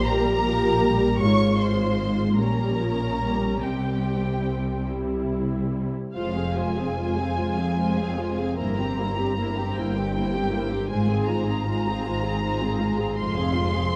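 From the first moment, a string orchestra plays a tender, lyrical, slow romantic movement in F minor, swaying in a rubato 6/8 at 47-54 BPM, with lush, distant first violins singing the melody over a softly attacked, expressive second violin line, smooth, even viola accompaniment, focused cellos and rich double basses, all bowed with vibrato in a dark production steeped in wet scoring-stage reverb, shifting into a new section at 6.2 seconds in this passage cut from a longer work.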